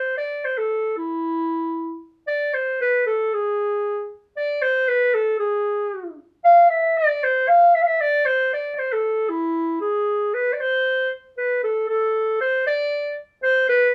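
Klezmer at 115 BPM in a straight 2/4, this short passage cut from a longer piece carries a festive yet bittersweet mood in E phrygian dominant. A mellow solo clarinet, played in a classical style, sits up front throughout, ranging from E4 to F5 with a roomy, slightly distant tone shaped by moderate studio ambience from a live take in one room. The melody moves into a new section at 10.6 s and continues to 13.9 s.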